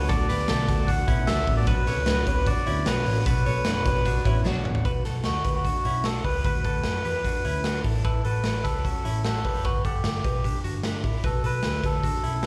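Jangly indie pop with a restless, wistful air, this excerpt from a longer piece sets a reedy, nasal melodica melody with slapback echo over arpeggios from a clean, compressed, direct-recorded electric guitar carrying harmonic tremolo and its own slapback echo. A woody, full-bodied steel-string acoustic guitar with old strings plays picked accompaniment until 4.9 s, where a drum fill closes the opening passage and the harmonies move through Bm, D6, A and Gadd9. Underneath, a dark, round, foam-muted vintage bass and a gritty, saturated garage drum kit with a punchy kick, up front in a pumping stone room, carry the band, all heard live through a club PA.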